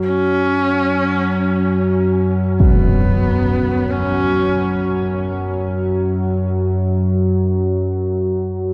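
Unsettling and dark, this free-time dark ambient drone excerpt, tuned to A4 = 444 Hz, rests on an up-front analog drone of evolving sawtooth and pulse-wave tones with pulse-width modulation and chorus, sustaining from its slow attack through to 8.7 seconds. A clear, husky horsehead fiddle, bowed by one player with vibrato and portamento, carries the melody until 4.9 seconds, its focused tone bathed in shimmer reverb and tape echo. A huge, bright, low-pass-filtered impact strikes at 2.6 seconds, all set in a cavernous cathedral reverb with a cassette-tape grain.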